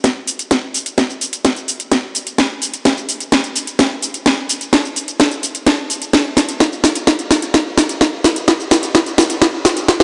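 Anthemic and powerful, this short cut from a longer EDM track runs in a straight 4/4 and is built entirely around percussion. An electronic kick drum sits in the background, punchy and tape-warm, with a high-pass filter thinning its low end. Up front, a layered house drum kit carries a cracking snare, metallic hi-hats and cabasa, giving the passage its edge. The whole ten seconds serve as a build-up marked by a drum fill from start to finish. A lush hall reverb of moderate depth surrounds the sound, and the top end is rolled off, leaving a slightly softened sheen over the produced, electronic drums.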